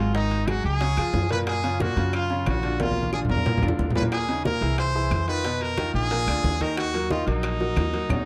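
A dark, warm production with light reverb frames this passionate, driving salsa excerpt, led by a forceful, punchy solo trumpet with light vibrato that sits up front despite its distant, roomy tone. A brilliant concert grand piano with deep bass supplies the accompaniment over a woody, thumpy pizzicato upright bass on gut strings, while ringing, low-tuned congas and metal-shell timbales sit in the background and round bongos and dry claves stay very quiet. A drum fill runs from 2.8 to 4.1 seconds, and the band hits an accent at 8.1 seconds.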